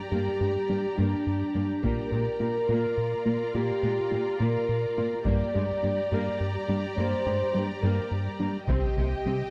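Tense and brooding, this short cut from a hybrid orchestral and electronic film score moves in a slow 6/8 at 70 BPM in G minor, where mellow French horns hold sustained chords over a lush, distant violin line, a smooth studio viola accompaniment and a background cello bass, while a rubbery, hollow square-wave bass riff and a tight, nasal sequenced synth arpeggio with chorus and tape echo drive underneath, and a close, dry taiko ensemble enters at 1.8 seconds, all set in a dark concert-hall reverb.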